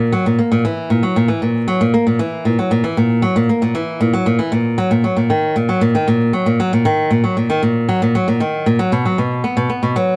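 A bright, fingerpicked flamenco guitar with fresh strings opens this short folktronica excerpt and plays solo for its full 10.2 seconds, sitting up front and trailed by tape echo. At a straight 116 BPM in 4/4, the mood is hopeful and playful. A moderate small-room reverb and a dark production surround the crisp acoustic tone.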